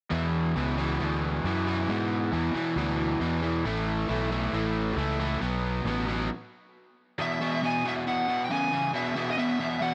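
Gritty and driving, this rock excerpt moves at 136 BPM in a straight 4/4, built on a dark, double-tracked, compressed electric guitar riff that sits up front over an E7, A and B5 progression. A growly, punchy fuzz bass with a bright edge drives alongside it until a stop at 6.3 s. At 7.2 s the riff lands on E and a smooth overdriven lead guitar enters with a high melody, all under light reverb.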